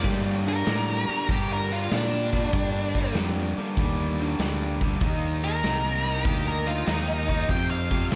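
A big arena sound wraps this short cut from a longer piece in a moderate concert-hall reverb, giving a heavy, brooding slice of blues rock power trio and southern rock at 97 BPM in 4/4 with a swung eighth-note feel, in G minor. Up front, a bright, double-tracked garage guitar drives an overdriven, picked riff with slapback echo, while a dark octave-fuzz lead guitar carries the melody with distortion and its own slapback, stopping at 8.0 seconds. Beneath them, a fingered electric bass growls with fuzz and overdrive, its warm tone blending direct and amped signal. The acoustic rock kit sits up front with a boomy kick, a medium-tuned snare, hi-hat and crash cymbal. Far back in the mix, a very quiet, gritty tonewheel organ holds thick sustained chords through a slow rotary speaker with chorus vibrato, key click and percussive second-harmonic attack, as the harmony moves from Gm to Eb at 5.0 seconds and F at 7.5 seconds.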